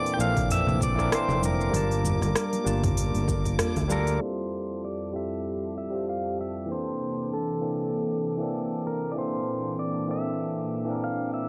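Wistful and smooth, this sunset chillout excerpt at 97 BPM with a swung sixteenth feel sets a bright, fingerpicked pedal steel guitar melody with slide, volume swells and 12-bit sampler grit over a barky tine electric piano, both up front with analog delay, while an airy, breathy pad sustains chords and a faint glassy harmonics texture drifts in the background, a deep house kit with smooth, low-passed hats and toms plays throughout, and a punchy electronic kick, very quiet congas and bongos, and a warm fretless bass drop out by 4.2 s, the mix carrying a dry, gritty hardware character with light digital ambience.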